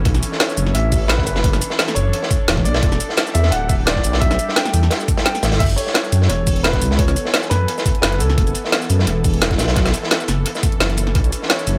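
Liquid drum and bass at 173 BPM in F# phrygian, rolling and lush, where a menacing detuned saw bass sits up front beneath a shimmering, ethereal pad with chorus, an overdriven electronic kit with a woody snare and bright hats layers over a saturated breakbeat kit and a gritty, thumpy kick that drops out from 5.3 to 5.6 seconds, and an open grand piano melody with tape echo enters at 0.4 seconds over Bm11, Em7 and F#m11 chords in this echo-heavy excerpt.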